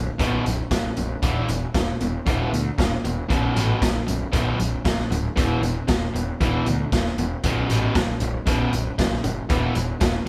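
A raw garage drum kit sits up front, with a boomy kick, a medium-tuned snare and hi-hat that sound saturated and gritty, their top end rolled off inside a small, pumping room, entering at 0.2 s. Beside it, a double-tracked electric guitar plays a bright, overdriven, picked riff in its low register, while a punchy bass, direct and amped with fuzz, plays underneath. The harmony alternates between B5 and E5 power chords through this straight 4/4 section of classic rock, which has a gritty, driving mood. The band plays live in one room, and a moderate large-studio reverb adds space around the parts. This excerpt is cut from a longer piece and runs to 10.3 s.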